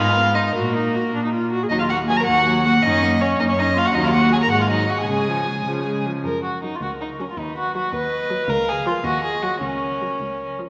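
From the very start a string quartet of gut-strung period instruments plays a stormy, dramatic classical-period movement in 6/8. A reedy first violin carries the melody up front over a dark, nasal second violin, a viola with light vibrato and a smooth-topped cello bass, all set in a wet concert-hall reverb as the harmony shifts to a new key at 3.9 s.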